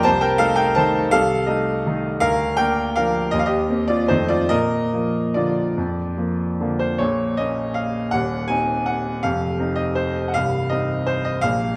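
A clear, up-front concert grand piano plays a solo classical waltz in 3/4, elegant and playful, with a rubato feel that moves between 138 and 180 BPM in Bb major, tuned to A4 = 438 Hz. Its open tone reaches from a deep bass up into the treble, and a wet recital hall reverb with a 1.6 s decay surrounds it. Cut from a longer piece, the passage settles on Bb at 4.5 s and darkens to Bbm at 7.0 s as a new section begins, coming to rest on F5 at 9.2 s.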